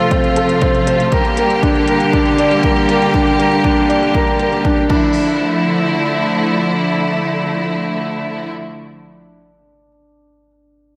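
Soaked in lush hall reverb, this dreamy piano-and-strings electronica fragment feels intimate and cinematic. A soft, felt-muted upright piano plays a mellow riff through a diffuse ambient delay until 11.0 s, while a clear, bowed symphonic string section sits up front with intense sustained chords, light vibrato and a smooth top, pumping with sidechain until 8.5 s. Underneath, a punchy, overdriven electronic kick and a background kit of crisp, filtered hi-hats and crash cymbal play until 5.0 s, as the chords move from F to Gm and settle on Dmadd9.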